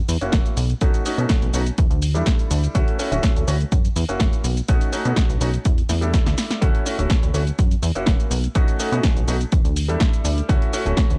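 Funky and sunny, this short clip of filtered disco house rides a straight 4/4 pulse, with a filter sweep running across its full 11.2 seconds. A plucky analog bass sits up front, its sawtooth and square-wave tone shaped by a fast-attack filter pluck, tube saturation and a low-pass filter, all pumping against the sidechain. An electronic kick drum, punchy and tape-flavoured, sits up front in the foreground, while an analog drum machine adds a punchy snare, hi-hat and shaker, with its hats and percussion also pumping. A bright baby grand piano carries the accompaniment, its brilliant yet worn tone close and intimate, with audible action noise and a phaser, low-pass filter and sidechain pumping colouring the chords. The harmony cycles through F#7, B7, Em7 and Dmaj9, a drum fill arrives at 5.9 seconds, and the dry, dark mix keeps the whole groove tight and close.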